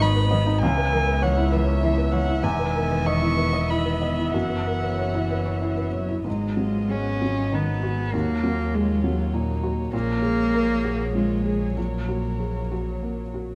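A dark solo violin, bowed sul tasto with light vibrato, carries the melody through this reflective, melancholic neoclassical fragment for piano and strings, moving in a rubato 3/4 lilt. Beneath it a close, airy-bowed cello sings a second line, a felt-muted upright piano adds mellow accompaniment with audible action noise and short sustain, and a warm chamber string section holds intimate sustained chords. A rich, pure bowed double bass anchors the low end, the whole set in light reverb, and the harmony shifts at 6.3 s as the piece moves into its second section.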